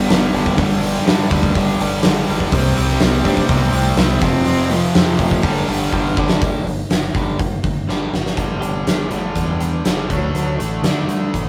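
Anthemic, cathartic quiet-loud alternative rock at 123 BPM in a rough rehearsal-room recording, cut from a longer piece, where a huge, up-front arena drum kit with a fat snare and punchy kick drives a bright distorted electric guitar riff, two overdriven semi-hollow guitars (one bright in the background, one double-tracked and very quiet, dropping out at 8.4 s and 6.4 s respectively), a growling overdriven picked bass and a dark, very quiet bowed cello melody full of vibrato and portamento, while a clean twelve-string electric guitar adds quiet arpeggios from 6.4 s, drum fills mark the changes, and the music settles into G major from 8.4 s.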